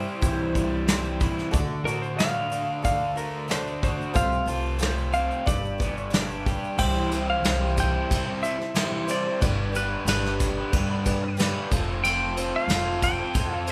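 A jangly, hopeful stretch of folk rock and heartland rock opens on a shimmering, octave-doubled twelve-string acoustic guitar set in the background, a double-tracked, overdriven hollow-body electric guitar riff and a woody, thumpy pizzicato upright bass, with an electric slide guitar solo running through the first 6.8 seconds. A soft brush drum kit sits up front while a grainy, close tube shaker stays in the background, and a very quiet, worn and slightly detuned upright piano, its action noise audible, adds a brief fill at 0.6 seconds. From 1.9 seconds a dark, compressed lap steel carries the melody, all of it playing live in one room with moderate large-studio reverb as this cut from a longer piece moves into a new section at 6.8 seconds.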